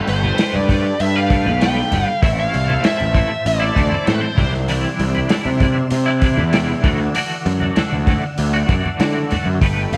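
A muffled, lo-fi vintage drum kit with a tight kick and rolled-off top holds a straight 4/4 groove alongside very quiet, low-tuned congas, while a round, up-front fuzz bass anchors this dark, mysterious psychedelic rock fragment. A bright, twangy double-tracked twelve-string electric guitar riff with tremolo moves through Gadd9, Am, Cadd9 and Dadd9, as a smooth tonewheel organ sits in the background with slow rotary swirl, chorus vibrato and key click. A bluesy, distorted lead guitar with wah and analog delay sings a melody until 4.5 seconds and returns at 9.9 seconds, all set in an echo-heavy small-room mix.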